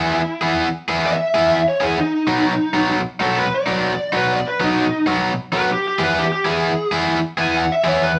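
Blues with a soulful, rollicking swing, this short cut from a longer piece pairs two overdriven electric guitars playing live in one room. A bright, up-front stack guitar picks out the riff while a warm lead through a small cranked amp takes a solo from 0.0 to 8.2 seconds over changes that move from E to B and back to E. A wet studio reverb gives the pair a lively sense of space.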